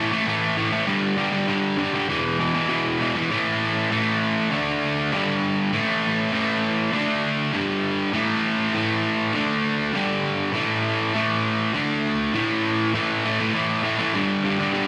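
Heard through a club's PA at a live gig, this short cut from a longer punk piece carries a light club reverb. A single distorted electric guitar plays alone from start to finish, bright and picked, double-tracked and held up front in the sound, with a touch of digital delay trailing behind it. The mood is angry and aggressive, driven at a fast 199 BPM in straight 4/4. The guitar runs through power chords on A, G and E in the opening seconds, then settles into a repeating cycle of A, D and G from 3.3 s. A final stretch beginning at 12.9 s holds on A before turning to G at the close of the clip.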